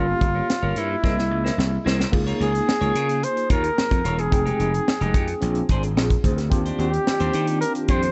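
Polished 1980s jazz-funk pop with a bittersweet, slick mood: a close-miked flugelhorn with light vibrato carries the melody up front over a growly, overdriven slap bass and a tight acoustic funk kit with a high-tuned snare that enters at 0.2 s and plays a fill from 1.0 to 2.1 s. A clean, picked electric guitar plays a riff, while in the background a worn, slightly out-of-tune tine electric piano with tremolo and lush chorus fills in the harmony, and a hollow, flute-like soft pad adds sustained chords from 6.5 s. The small-room sound is dark and warm, and the chords drift through an altered dominant toward a lush major-thirteenth resolution in this excerpt from a longer piece.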